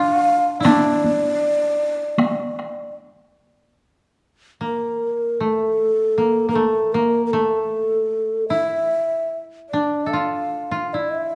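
A dark, tape-saturated recording set in a moderate recital hall reverb carries this austere, solitary fragment of Japanese chamber music, played rubato in 2/4 around 71-81 BPM in D hirajoshi. An up-front bamboo shakuhachi leads with a breathy, hollow, straight tone and tongued chiff, while a woody, dry koto plucked with fingerpicks holds a second line beneath it. A taiko ensemble struck with hard sticks breaks in from 0.7 to 2.8 seconds before the piece shifts to a new section at 3.8 seconds.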